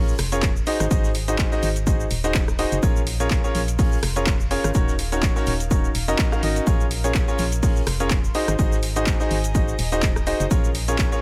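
A bright, up-front concert grand piano carries an energetic, soulful piano house riff with sidechain pumping and delay, over a hollow, organ-like FM bass that pumps as well, a punchy electronic kick, a tape-warm analog drum machine of handclaps, hi-hat, rim click and shaker re-recorded in a small room, a very quiet acoustic soul kit with a rolled-off top, and a faint, dark, nasal chamber string section bowing a gut-string texture behind the groove in this excerpt from a longer piece.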